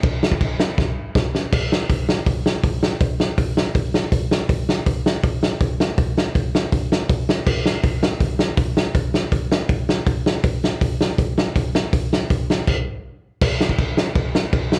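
A loose indie drum kit opens this rowdy, upbeat punk excerpt at 162 BPM in a straight 4/4, tumbling into a fill at 0.8 seconds before settling into a driving beat of kick, snare, hi-hat and crash. The kit sits up front with a fat snare, punchy kick and dark cymbals under a rolled-off top, caught as if through the PA of a live club gig. A sudden stop at 12.7 seconds breaks the momentum before the opening groove returns at 13.4 seconds.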